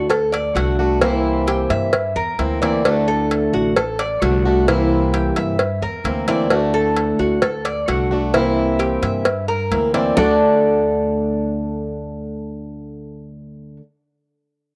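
Warm and danceable, this short excerpt of Cuban son and guajira moves at 131 BPM in a straight 4/4, centred on D major with the harmony rocking between D and C7. A fingerpicked, plugged-in acoustic guitar in a swing style sits up front with a boxy tone, carrying the accompaniment, while a Cuban tres beside it spins mellow, metallic arpeggios on its double strings, some of them doubled at the octave. Beneath them an upright bass with gut strings plays woody, thumpy pizzicato lines at a lower level. Cowbell and bongos, round and low-tuned, are struck with hard hands and captured close and dry, dropping out at 10.3 seconds as the passage moves into a new section. The guitar and tres both carry a cassette tape colour, and the whole has the feel of a home recording, with light reverb and a small room ambience.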